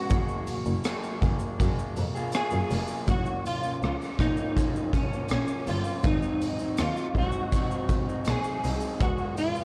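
Dreamy and nostalgic, this bedroom-pop fragment pairs a warm, fingered clean electric guitar melody bathed in ensemble chorus with a dark, slightly broken-up picked guitar from a small old amp that wavers with subtle chorus and pitch drift, over a distant bowed double bass with vibrato and tube saturation and an up-front, gritty garage kit of punchy kick, hi-hat, rim click and shaker, all wrapped in light reverb, small-room ambience and the wobble of worn cassette tape.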